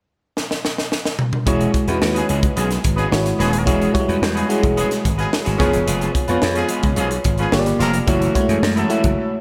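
Urban and upbeat, this polished 1980s jazz-funk pop excerpt opens with a crisp fusion drum kit alone, playing a fill from 0.4 seconds with a high-tuned snare, punchy kick, toms and hi-hat set up front in a small, pumping room sound. At 1.5 seconds the band arrives on an E69 chord: a growly, direct slap bass, a glassy FM electric piano with a bell-like attack and vintage warble under subtle chorus, and a twangy, fingered electric guitar riff at the edge of break-up. A horn section joins at 2.1 seconds with a smooth top, light vibrato and delay, carrying a jazz-style second line behind the others. The harmony moves through C#7, Gm7 and F#m7 before a closing band accent. A moderate concert hall reverb surrounds the whole mix, giving the tight groove a sense of space.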